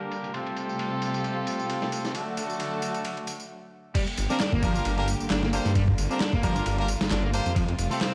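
A swung, funky breakbeat drives this energetic excerpt from a longer piece, built on a dusty, sampler-style soul drum kit with a thumpy kick, a medium-tuned snare, ride and crash, all compressed and overdriven into a gritty crunch, joined by layered, tape-toned electronic tambourine and handclaps. Over the opening half, a filter sweep runs while a clear studio string section holds bowed, vibrato-rich chords through a vintage sampler grit and sidechain pumping, and a tight, jazz-style horn section punches stabs from the front through a low-pass filter and dub echo. After a brief stop at 3.5 seconds, the drop lands at 4.0 seconds, bringing in a crunchy, double-tracked electric guitar riff with its own dub echo. At 4.2 seconds, a thick, detuned saw bass enters up front with a menacing, beating tone. The harmony moves from Fadd9 through D to G minor, and the whole track sits in a light reverb with a coat of vinyl crackle.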